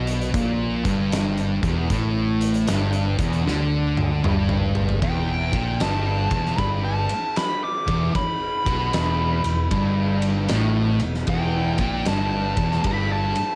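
An oversized, low-tuned acoustic drum kit sits up front with a punchy kick, fat snare and dark, rolled-off cymbals, driving this ominous, hypnotic stoner-doom excerpt with a swung 4/4 feel and a drum fill from 3.5 to 5.0 seconds. Three thick, picked fuzz guitars grind out a low riff on a single E minor chord, one tucked in the background and another double-tracked and very quiet, while a fingered electric bass with overdrive adds amped punch beneath them. At 5.0 seconds a compressed fuzz lead guitar with wah, distortion and slapback echo takes a high solo, all set in light reverb and small-room ambience.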